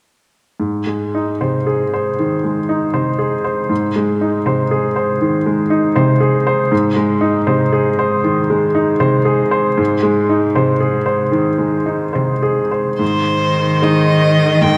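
Bathed in the long, echoing reverb of a vast cathedral, this tender, lyrical fragment of a slow romantic piano trio movement unfolds with rubato as a bright, up-front baby grand piano carries the accompaniment from 0.6 seconds, a rich cello joins at 1.4 seconds with a soft attack, expressive vibrato and portamento on its second line, and a focused, bowed violin finally takes up the melody at 13.0 seconds.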